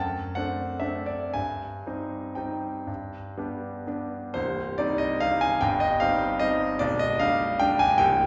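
In a flexible, rubato 3/4, this classical piano waltz unfolds with a nostalgic, wistful air in a brief section cut from a longer piece. A solo grand piano, bright and brilliant yet intimate, sits up front with a polished presence, its action noise audible as it ranges from B0 to A5 over harmonies moving from D7/F# through Cm/G and G to Cm and G7/B. A wet recital-hall reverb of 1.4 seconds surrounds the playing, and a new section begins at 4.4 seconds.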